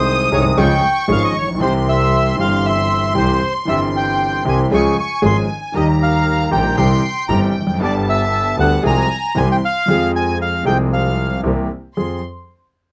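A rubato tango pulse in four sways freely through this short, melancholic and dramatic fragment cut from a longer piece. A reedy, bright bandoneon carries the melody up front, stopping at 11.4 seconds as the phrase comes to rest. Alongside it, a bowed violin section plays a second line high in its range, earthy with light vibrato, while a concert grand piano gives up front accompaniment with deep bass, a vintage intimacy and audible action noise. A single bowed double bass anchors the low end with an intense, boxy tone, vibrato and an airy bow. Light reverb surrounds the rough home demo mix as the harmony moves through darkly shifting chords to a closing dominant seventh and its resolution.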